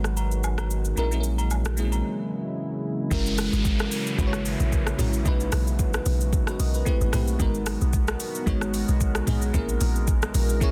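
Deep, soulful amapiano at 112 BPM opens with a bell-like, sparkling FM electric piano treated with chorus and phaser, a moody sawtooth pad with sidechain pumping, up-front electronic afro-pop drums with a deep kick, metallic hats, rim clicks, shaker and toms, a punchy sine sub bass up front, and brief agogo bells and woodblock, all moving through G#m9 and A#m7b5 with a lightly swung sixteenth feel. After a short break at 2.0 seconds, the drop lands at 3.1 seconds, where a round, dark log drum bass with a fast, decaying attack takes over the low end and an electronic downlifter sweeps through as the chords shift through F#7, B6 and Am9 before returning to G#m9. The mix is dense and heavily limited, with light reverb and a faint mains hum underneath.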